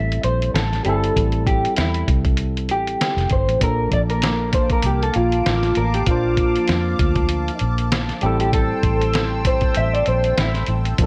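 Dreamy and laid-back, this short cut from a longer indie and bedroom pop piece moves at 98 BPM in 4/4 with a gentle sixteenth-note swing, as a clean electric guitar solo runs throughout through a small old amp with slightly broken-up, warbly analog chorus, over a barky tine electric piano, a round, foam-muted vintage bass and a muffled, pitched-down sampler-style kit with a thumpy kick and fat snare, while a swirling, detuned sawtooth pad with phaser enters at 3.6 seconds as the chords move from Am7 to Bbmaj7 and back to Am7 at 8.2 seconds, all set in light digital ambience.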